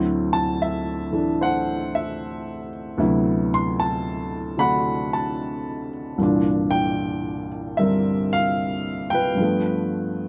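Swinging and warm, this brief slice of solo jazz at 75 BPM in 4/4 features an intimate, woody upright piano placed up front, its natural tone carrying audible action noise as it spans C2 to C6 and moves from D13 through C9 to G9 within a dark production touched with light reverb.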